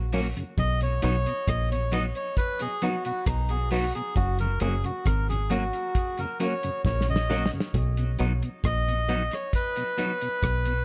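The sound is dry, with little reverb, and this short cut from a longer roots reggae piece carries a sunny, warm mood at an unhurried, straight pace. A deep, round dub bass, foam-muted and up front, anchors the groove, while a cloth-damped drum kit thuds along with a tight kick, medium-tuned snare, rim clicks and hi-hat under a rolled-off, smooth top. A reedy, breathy melodica enters at 0.6 seconds and carries the tune up front with a nasal, wooden-cased character and a tape echo trailing its phrases. Beneath it, a clean, picked electric guitar with its own tape echo fills out the accompaniment, joined by a clear tonewheel organ with chorus vibrato and audible key click sitting in the background. A drum fill from 6.8 seconds closes the melodica solo and leads into a new section at 7.7 seconds, as the harmony settles back onto B.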